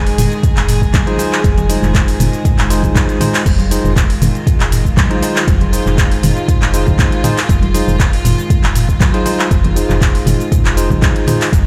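Floating bowed strings and a woody, round FM bass open this earthy, driving afro house excerpt on a single Fm7 chord, both pumping against a deep electronic kick, while an afro-pop kit of metallic hi-hats, cabasa, handclaps, toms and crash joins with close, dry congas in the background, and from 1.1 seconds a barky, bell-like tine electric piano adds clean stabs with pumping and delay, all heard as if played on a big sound system in a bare stone room.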